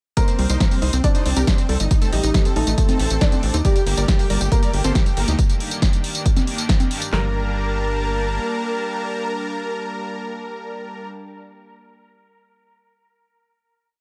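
Bittersweet and soaring, this short uplifting trance piece in G minor runs at 138 BPM, opening straight into a drop where a huge, detuned supersaw lead repeats a riff in thirds and sixths over a pedal note in sixteenths, roughened by 12-bit sampler grit, sidechain pumping and dub echo, while a dark baby grand piano doubles its own riff in octaves with delay. Underneath, two punchy analog drum machines re-recorded in a small room drive a four-on-the-floor kick with snare, handclaps, closed and open hats, tambourine and high conga, joined by a tight, galloping sixteenth-note sequencer bass with tube saturation and a background unison pluck looping a 3-step arpeggio that drifts against the bar. A thick, warbling chorused pad enters at 3.6 seconds, and after the drums drop out around 7.1 seconds it sustains beneath the lead and piano through a final Gmadd9 chord to the close at 11.1 seconds.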